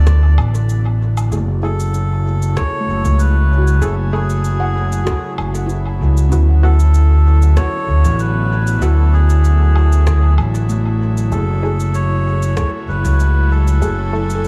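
Deep and meditative, this ambient dub excerpt moves at 96 BPM in 4/4 with a light swing on the sixteenths, set in F# minor. A reedy, nasal melodica carries the melody with a gritty vintage sampler edge and dub echo, floating over an airy, breathy pad that holds sustained chords through a chorus effect. Up front, an overdriven fingered electric bass gives a punchy, amped low end, while a tight, tape-warm electronic kick and a lighter layer of electronic rim click, cabasa and woodblock, sent into dub echo, anchor the groove. From 1.3 seconds a muted, filtered dub chord stab sits in the background with chorus and echo, and from 2.8 seconds a warm, ringing handpan adds arpeggios played with the fingertips. The harmony rocks between D6/9 and F#m9, and the kick drops out at 12.7 seconds as the echo-heavy, dry mix carries on to the cut.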